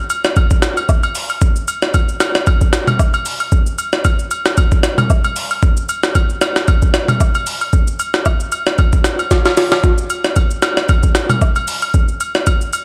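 A relaxed amapiano groove at 114 BPM in 4/4 swings its sixteenths, carried by an up-front, sampler-style jungle drum kit of thumpy kick, high-tuned snare, rim click, hi-hat, shaker and toms, pitched up, compressed and gritty with overdrive and the ring of a large room. Agogo bells and woodblock sit lower in the mix with an acoustic, close sound, playing alongside the beat across the whole cut. A short drum fill arrives at 9.3 seconds, and light reverb and a dark, warm production give this fragment of a longer piece a laid-back glow.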